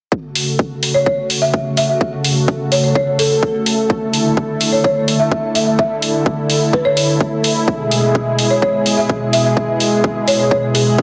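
Triumphant and anthemic, this festival progressive house excerpt moves at 127 BPM in straight 4/4, built on a thick, detuned sawtooth unison pad with chorus, 12-bit sampler grit, sidechain pumping and a filter sweep, holding sustained chords through F#m, Dsus2 and E. A punchy, high-passed kick and metallic hi-hats, re-recorded in a small room and entering at 0.4 seconds, sit up front. From 0.9 seconds a woody, rustic marimba played with soft mallets carries the melody through grainy sampler texture and tape echo, all set in a lush hall reverb under a dense, heavily limited modern master.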